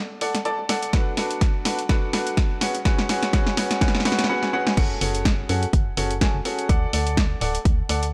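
Swung sixteenths at 125 BPM in 4/4 drive this soulful, bittersweet piano house cut in F# minor, where a punchy analog drum machine's crash, hi-hat and snare fills build alongside a layered electronic kick entering at 0.9 s, a hollow, dark, high-passed organ-like FM bass pumps underneath, and a clear, worn grand piano riff with sidechain pumping and dub echo sits up front through D, Bm7 and C#7sus4 before the drop lands on F#madd9 at 4.8 s, all set in a lightly reverberant space.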